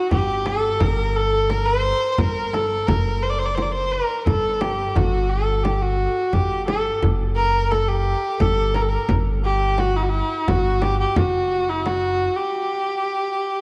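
Persian modal ensemble music in a straight 3/4 feel, melancholic and hypnotic, cut from a longer piece. A single bowed kamancheh carries the melody up front with a clear, earthy tone, light vibrato and gliding portamento, over a woody pizzicato upright bass. A tight tombak and a deep, dry frame drum sit in the background. The dreamy mix is soaked in plate reverb, and the bass and percussion drop out between 12.0 and 12.3 s, leaving the kamancheh alone through the break until 13.6 s.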